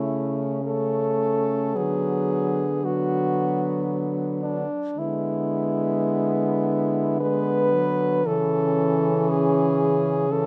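Classical and lyrical, this serene, tender passage for horn quartet unfolds in a rubato triple metre, with a clear, up-front French horn singing the melody over a second clear horn that sounds distant and roomy with light vibrato, a warm horn accompaniment also touched by light vibrato, and a mellow horn bass, all four playing throughout the 10.5 seconds as the harmony moves from A/C# through Bm/D and E7/D back to A/C#, captured by close, detailed microphones in light reverb.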